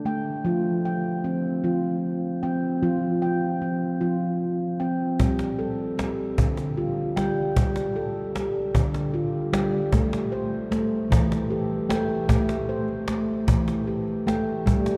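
Unfolding in a slow 6/8 at 51 BPM, this hypnotic, gentle stretch of meditative world music, cut from a longer piece, centres on up-front handpan arpeggios of ringing, dark stainless-steel tone played with the fingertips, joined at 5.2 s by an up-front, woody cajon with faint snares, the whole sound bathed in a vast, echoing cathedral reverb with a cassette-tape grain.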